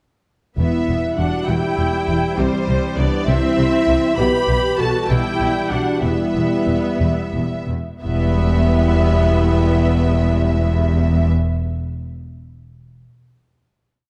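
Rich bowed cellos drive a bass ostinato, doubled by warm double basses, in this dark, epic orchestral film cue in E minor and 6/8 at 57-67 BPM. A clear, close violin section carries the lush vibrato melody, doubled at the octave by a second, more distant violin section and in thirds by the smooth violas. Mellow trombones and roomy French horns hold sustained chords through the progression Em, C, Em/B and Em. The music slows from 3.3 to 8.0 seconds before settling on a final chord held to 12.2 seconds, all in a dark, warm production with moderate scoring-stage reverb.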